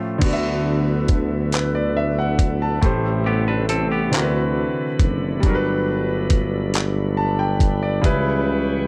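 Slow R&B in a straight six-eight at 46 BPM in D major, this intimate fragment cut from a longer piece opens with a clear grand piano, its action noise audible and its notes sustaining long, alongside a clean, fingered semi-hollow electric guitar that carries a second line until 4.3 seconds. From 0.2 seconds a breathy, mellow tuba with vibrato and scooped, jazz-style notes takes the bass up front, a gritty, compressed sampler-style soul kit brings a thumpy kick, hi-hat, handclaps and crash until 8.2 seconds, and a smooth tonewheel organ holds chords in the background through a slow rotary speaker. The harmony moves from D69 through Am7, D13 and Gmaj7 to C#m7b5, in a dry setting with little reverb.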